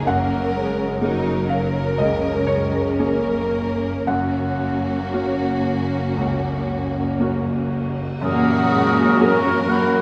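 Cinematic film score, hopeful and tender, moving in a slow, rubato 4/4 at 54-63 BPM in F# major, where a lush violin section sings the melody over a second violin line with portamento, a muted, intimate felt upright piano, a smooth viola section, and a bowed cello and double bass section carrying the bass. Bright cymbal swells and tam-tam join in the background at 4.1 seconds, and at 8.2 seconds a pure silver flute, a light-vibrato oboe and a distant clarinet add second lines as the ensemble accents a new section. A wet scoring-stage reverb places the orchestra further back in the room, and this excerpt is cut from a longer piece.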